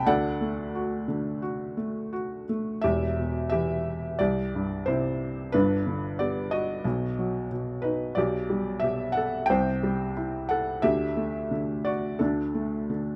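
Classical solo piano with a sunny, hopeful mood, this short passage from a longer piece moves at 89 BPM in 4/4 with a free, rubato feel. A felt-muted upright piano plays alone, its tone soft, intimate and vintage with a short sustain, sitting up front and spanning from deep bass to the upper middle register. Heard through close, detailed microphones in a small room, the harmony opens on D and shifts into a new passage at 2.8 seconds, wandering through Em, Cadd9 and G before settling on Dsus4 and D5 by 12.2 seconds.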